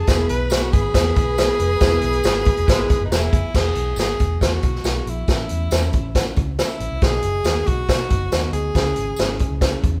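This short cut from a longer piece sounds like a band playing live in one room, with a moderate large studio reverb giving it an open, roomy glow. It is joyful, uptempo 1960s-style soul in E major at 138 BPM, moving through E, A, B and C#m. A breathy tenor saxophone carries the melody throughout, with vibrato, scooped notes and a soft attack in a jazz style, while a bowed violin section adds an expressive second line in the background until 3.5 seconds. A brief, punchy horn section with light vibrato pops in around 2.7 seconds, and the band hits accents from 1.8 to 3.5 seconds. Underneath, a dark, woody, slightly detuned upright piano adds mellow accompaniment, a foam-muted fingered electric bass gives a round, amped low end, and the swinging big-band drum kit sits up front with a boomy kick, medium-tuned snare, hi-hat and crash. A jingly tambourine, close and dry, stays very quiet beneath it all.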